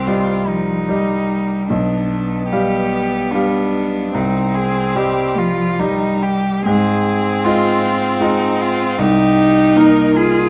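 Tender and warm, this slow romantic movement for piano trio sits in C minor and 3/4, moving with a rubato feel at roughly 66 to 79 BPM. The bowed violin carries the melody with a warm vibrato, its tone focused and smooth on top, and it sits a little quieter than its partners. Beneath it, the cello plays a second line, rich and even, with light vibrato and a close, up-front presence. The grand piano supplies the accompaniment across a broad span from low bass to upper treble, its sound bright and brilliant yet natural, placed up front alongside the cello. All three play together throughout the 10.5-second passage, which is cut from a longer piece, with harmony moving from C minor through G7/B and Ab6 to settle on Cm7 at 9.0 seconds. A recital hall reverb with a 1.6-second decay adds a wet bloom, and the production leans dark overall.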